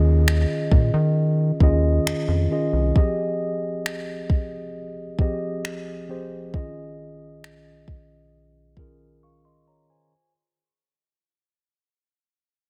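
This moody, late-night contemporary R&B piece moves at a slow 67 BPM in straight 4/4, fading out throughout as a mellow, clean tine electric piano carries the harmony from Eb9sus4 to Fm9 and back. A rubbery, hollow square bass with a resonant filter pluck sits up front until 2.9 seconds, while a very quiet electronic downlifter sweeps underneath at the start. From 0.3 seconds a smooth, produced drum kit of finger snaps and a soft kick holds the groove until 9.0 seconds, just ahead of a brief break at 9.2 seconds, all set in light reverb and digital ambience with a faint mains hum.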